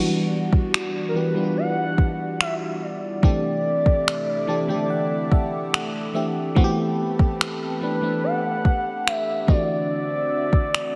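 A straight 4/4 groove at 72 BPM comes from a smooth, electronic R&B kit of finger snaps and a soft, tape-warm kick, setting a late-night, moody contemporary R&B scene in E minor that moves through Em9, C69, Am9 and D9. A mellow FM electric piano with a soft pad layer and chorus carries the accompaniment and adds a fill from 4.1 to 6.6 seconds, while a thick, detuned sawtooth unison pad holds warbling sustained chords beneath it. From 1.1 seconds a gliding portamento lead with vibrato, phaser and tape echo sings the melody, and a 2.8-second plate reverb soaks the mix in a dreamy haze.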